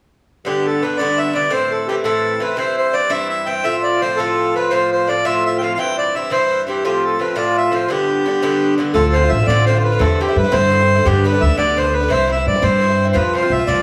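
A picked Irish bouzouki with metallic double strings opens this cheerful, bright Celtic jig at 0.4 s, joined a moment later at 0.5 s by a reedy, hollow accordion carrying the melody up front, in 6/8 at 114 BPM in G mixolydian. At 8.9 s, as the tune moves into its second section, a woody, thumpy pizzicato upright bass with steel strings enters to anchor the low end. The close, upfront parts sit in a small room ambience with a moderate recital hall reverb, and the passage is cut from a longer piece.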